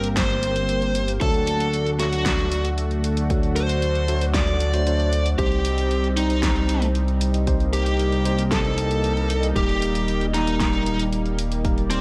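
A moody, nocturnal synthwave passage at 115 BPM in a straight 4/4 opens with a lush, detuned unison pad, a glossy chorused synth bass, a worn tine electric piano and a pop drum kit all sounding together, with an electronic kick drum joining at 0.2 s. Up front, a bluesy overdriven lead guitar carries the melody between C4 and D5, its picked, distorted tone trailed by tape echo. The thick sawtooth-and-square pad holds bright sustained chords with chorus and sidechain pumping, while the retro bass, built from pulse and sawtooth waves with a fast plucky attack, sits prominently beneath over a Gm, D, Cm and Eb progression. Tucked in the background, the slightly out-of-tune electric piano adds lightly overdriven stabs that sound as if heard through built-in speakers. The drums pair a punchy layered kick with a fat snare and warm hats, the snare and hats under gated reverb and the whole kit in studio ambience, all set in light reverb in this 12-second slice of a longer piece.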